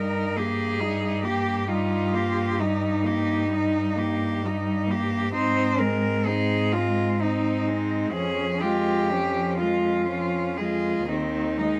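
Lyrical and tender, this slow, rubato classical excerpt in 12/8 and Ab major sets four bowed cellos with vibrato together throughout its 11.8 seconds, an intense, up-front cello singing the melody over a close, even second line, a clear, smooth accompaniment and a bass, all in light reverb as the harmony moves from Eb/G through Ab and Db/F to Ab/Eb.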